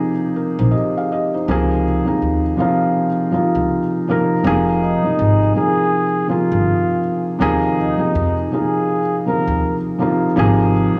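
A felt-muted upright piano opens this hazy, nostalgic hip hop fragment, its soft, thick-felt tone sitting up front with a touch of plate reverb as it moves through Abmaj7, Db69, Fm7 and Ebsus24 in F minor. An upright bass joins at 0.6 seconds, plucked pizzicato on steel strings with a woody, dark voice underneath the harmony. The groove moves at an unhurried 81 BPM in 4/4, with a lazy swing on the sixteenths. At 4.8 seconds a breathy flugelhorn steps forward for a brief jazz-style solo, mellow and up front, carried by plate reverb and tape echo before it falls away at 9.8 seconds. The whole piece is wrapped in a small, wet room sound and the faded grain of cassette tape, settling onto an Ab chord as the cut ends.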